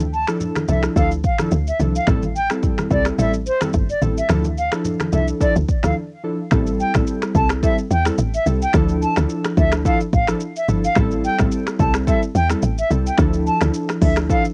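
A silver concert flute carries the melody in a pure, warm tone with gentle vibrato and a soft attack, sitting up front in this mellow, sultry afrobeats cut from a longer piece. It moves at 108 BPM in D minor with a lightly swung sixteenth-note feel. Beneath it, a woody, punchy log drum bass with a fast, decaying attack and a faint noise layer sits prominently. Round analog keys, detuned and full-bodied with chorus and a filter sweep, comp through a slow alternation of Dmadd9 and Am7. A deep house drum kit brings a deep kick, metallic hats, finger snaps, rim clicks and shaker, roughened by 12-bit sampler grit and tape. Bright, low-tuned congas played with hard hands sit in the background until a short break at 6.0 seconds, after which the groove moves into a second section at 6.5 seconds, all captured dry on a home cassette recording.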